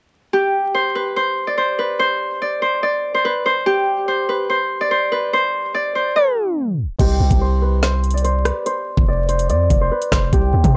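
A half-time drill pulse drives this menacing, cold hip hop excerpt, though for its opening stretch a fingerpicked Celtic harp carries the melody alone, its ringing acoustic tone softened by a low-pass filter and sitting up front. A tape stop drags the sound down from 6.2 seconds, and at 7.0 seconds the drums and bass arrive together with a C5 chord that later moves to F5. The electronic drill kit hits with a knocking kick, woody snare, metallic hi-hats, rim clicks and a crash cymbal, all carrying a tape-tinged glow. Underneath, a long, deep sine-based 808-style bass with a fast attack and decaying tail holds the low end up front. The whole piece sounds dry and gritty, with transformer saturation, vinyl crackle and a digital ambience giving it a hardware-driven edge.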